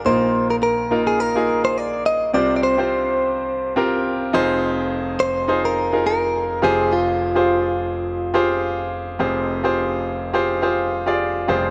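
Pop in F minor at 105 BPM, this short cut from a longer piece feels urgent and dramatic, with a light swing on the sixteenths. A brilliant concert grand piano carries the accompaniment from the start to 11.7 seconds, ranging from deep bass notes up into the treble with a polished, present tone and short sustain. Above it, a clean electric guitar, recorded direct and picked with a compressed, up-front sound, plays the melody from 0.1 to 8.6 seconds before dropping out and leaving the piano to finish. The harmony moves through Bbsus4, Csus4, Fm7 and Fmadd9, and a second section arrives at 9.2 seconds. A moderate plate reverb with a long tail surrounds the sound, and the instruments are tuned slightly sharp, with A4 at 443 Hz.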